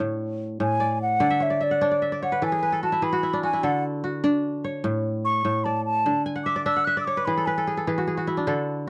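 West African traditional music in a straight 12/8 at 99 BPM, this hypnotic, joyful excerpt opens with a crisp, ringing kora playing fingerpicked arpeggios up front, tuned slightly below standard pitch at A4 = 437 Hz. An airy, hollow concert flute enters at 0.6 s with a tongued solo melody full of vibrato, while the kora adds fills from 1.2 s and again from 6.3 s over a simple A and D harmony. The sound is dry and close, in the manner of a 1970s studio, touched with light reverb.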